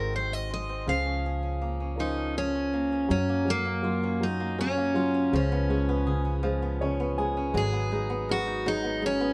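From the first moment of this heartfelt, intimate acoustic folk-pop ballad in F# major, set at a slow 54 BPM in a straight 6/8, an up-front picked steel-string dreadnought guitar with fresh strings carries the melody over a natural-sounding grand piano with audible action noise, a boxy swing-style acoustic guitar picking arpeggios with the odd finger squeak, and a woody, thumpy pizzicato upright bass on gut strings, all in light reverb as the chords move from G#7 through F#maj7 at 3.1 seconds to G#m9 at 7.5 seconds.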